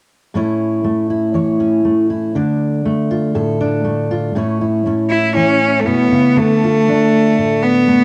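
Uplifting and anthemic, this folk fragment, cut from a longer piece, moves in a straight 4/4 feel over a simple alternation of A and D minor chords. A fingerpicked steel-string acoustic guitar opens at 0.3 seconds, its full-bodied jumbo tone sitting up front with audible finger squeaks as it carries the accompaniment. At 5.1 seconds a single bowed cello takes the melody, bright and biting, with light vibrato and an airy bow that gives the line an intense, forward presence. The cello is the louder of the two parts and carries a touch of tape echo. The home cassette recording lends both instruments a tape-worn character inside a wet, short room ambience.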